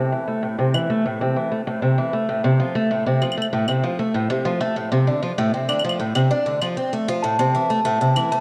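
A picked twelve-string acoustic guitar sits up front in this short folktronica fragment, its octave-doubled strings shimmering through arpeggios that run from A2 to D4, with a boxy archtop body and the squeak of fingers on the strings. A low-pass filter sweeps across the guitar for the full 8.4 seconds, and a tape echo trails its notes. Electronic claves enter at 0.7 seconds, tape-warm and re-recorded in a small room, marking a straight 4/4 pulse at 97 BPM. Near the close, at 7.2 seconds, a mellow glockenspiel played with rubber mallets rings a bell-like A5 in the background, roughened by vintage 12-bit sampler grit and drifting into a diffuse ambient delay. The harmony moves through Am, F/A and Dm7 before returning to Am, keeping the mood intimate and delicate in A minor. A wet plate reverb with a 2.1-second decay soaks the whole mix, giving it a dreamy haze.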